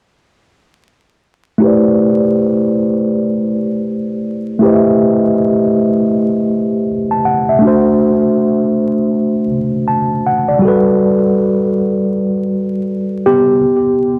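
Hip hop at 80 BPM with a swung sixteenth-note feel, this nostalgic, melancholic fragment in A dorian features a lone tine electric piano, worn, slightly out of tune and up front, playing from 1.6 to 14.2 seconds. Shaped by cassette tape, a low-pass filter and analog delay, the piano moves through Am11, D7/A and Gmaj9 before arriving on a rootless A7sus2, with a filter sweep running across the passage. A small room reverb and vinyl crackle give it a homemade cassette character.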